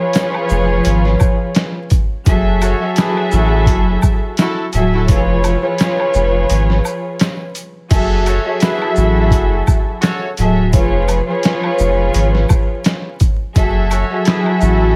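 A bowed string section opens this gritty, tough boom-bap hip-hop excerpt, sounding intimate and close with light vibrato, a soft sul tasto attack and a smooth top, over a bed of vinyl crackle. Almost at once a sampler-style drum kit arrives up front, compressed and pitched down with a thumpy kick, a medium-tuned snare, hi-hat, shaker and crash, all carrying a tape-warm, small-room grit and a lazy swing. A deep, round dub sub bass joins at 0.5 seconds, its sustained triangle-and-square tone sitting low beneath the harmony, which rocks between C#7/E# and F#m7. From 2.6 seconds a clear horn section adds pop-style stabs with light vibrato and a touch of delay, while an egg shaker and woodblock tick quietly in the background. A brief break at 6.5 seconds leads into a repeat of the same section, and the passage is cut from a longer piece.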